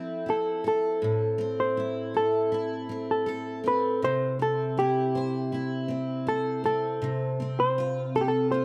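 In a straight 4/4 feel, this heartfelt, sunny pop excerpt opens with a double-tracked, picked steel-string acoustic guitar, full-bodied with fresh strings, carrying the accompaniment through Fmaj7, Am, C and F/C. At 0.3 seconds a clean, dark hollow-body jazz guitar enters up front, fingered, to carry the melody in its upper range. A moderate plate reverb lends the recording a spacious, glowing air.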